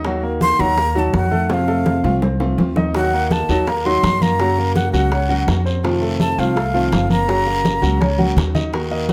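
Latin Cuban son and guajira at a danceable 166 BPM in straight 4/4, heard in a short cut from a longer piece, with a breathy, vibrato-laden jazz flute carrying the melody up front with a crisp, chiffy attack and plate reverb over chords moving from Ebm through F, Gb and F7. A clear, polished concert grand adds arpeggios with audible action noise and long sustain, while a fingerpicked classical nylon-string guitar accompanies and a woody pizzicato upright bass sits up front. Soft-handed congas with a thick, damped skin and tight, high-tuned bongos stay in the background, drum fills arrive at 1.5 and 8.0 seconds, and a raspy, saturated guiro enters at 3.0 seconds, all in a close, detailed, lightly reverberant mix.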